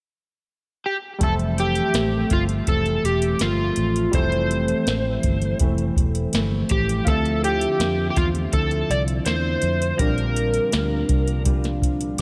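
Indie pop with a bedroom-pop haze, this sunny, hazy fragment of a longer piece moves in a straight, unhurried 4/4. An overdriven slide guitar enters at 0.9 seconds and carries the melody up front, its fingered tone thickened by analog chorus and tape echo. From 1.2 seconds the full band joins: a dark, compressed clean electric guitar with chorus and a warbly pitch drift, a round, punchy bass that is muted with foam, and a soft vintage rhythm box with a deep kick, tonal snare and metallic hats that sit tape-warm at the front. Analog keys built from pulse and sawtooth waves stay in the background, their filter sweeps and decaying notes softened by chorus and slapback echo, and they add a short fill at 11.8 seconds. The harmony drifts from Fmaj7 to Dm9 and then Bb6, and a lush hall reverb gives the mix a big arena sound.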